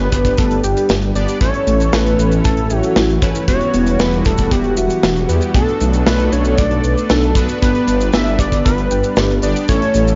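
A thick, saturated detuned saw bass sits up front in this driving, nostalgic synthwave excerpt at 116 BPM, carrying a chord cycle of G, A, Emadd9 and Bm7 beneath a bold, mellow unison lead with vibrato and tape echo, a warbling, vintage unison pad with sidechain pumping, soft, round pluck arpeggios with a cassette-tape haze, fat brassy analog synth stabs, a tight, airy kick, and a polished kit of hi-hat, shaker and medium-tuned snare in light reverb.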